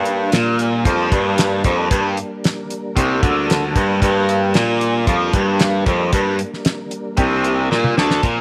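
Psychedelic rock at 114 BPM in G minor, mysterious and hypnotic, built on a bright, double-tracked overdriven guitar riff with phaser, a smooth-topped baritone saxophone holding the bass line up front, dry 70s drums with a fat snare and tight kick, and very quiet sustained tonewheel organ chords turning on a slow rotary speaker, all resting on a single Gm chord in a small room until a drum fill at 7.7 seconds and a dark, fuzzy lead guitar that enters at 8.0 seconds just before this fragment of a longer piece cuts off.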